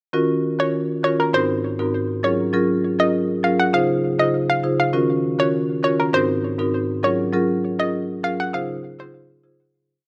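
A hollow, nasal square-wave pluck carries a bouncy, syncopated hook with a chorus sheen, its fast attack and short decay set up front over a detuned layer with a touch of noise and a sub octave beneath. Beside it, a mid-forward marimba played with medium mallets lays down syncopated chords through Ebm7, Ab7, Gbmaj7 and Dbmaj7 in this romantic, joyful afrobeats piece in Db major at 100 BPM. Light reverb and studio ambience surround the chorus section, which fades out from 7.3 seconds to its close at 9.7 seconds.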